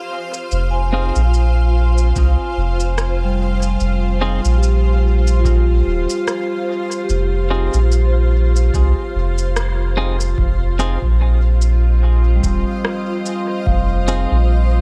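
Ambient dub in F minor at 73 BPM, this hazy, spacious excerpt sits on a swung sixteenth-note feel in 4/4. A cloudy, detuned granular pad holds sustained chords through its own reverb, while a vibraphone played with soft mallets and the motor off rings out metallic arpeggios trailed by dub echo. The soft, round sub bass sits up front with a touch of tube saturation, and a clean, compressed electric guitar adds fingered stabs that also feed into the dub echo. An electronic shaker and rim click carry the rhythm in a small room ambience with echo, joined at 2.2 seconds by a deep analog kick set back in the mix. The band hits an accent just before the harmony moves from Fm to F7(no3) at 10.4 seconds, and a calm, glassy texture of drifting overtones with chorus enters quietly in the background at 11.3 seconds.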